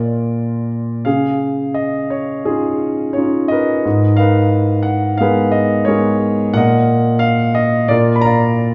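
Classical solo piano in a bittersweet, moody vein: this brief 8.7-second fragment of a longer piece unfolds lyrically at a rubato 88 BPM in 4/4, its concert grand sounding deep in the bass, open and up front with long sustain as it moves from Bb through Dbadd9, Abmadd9 and Ebm/Bb before returning to Bb, set in the wet reverb of a recital hall.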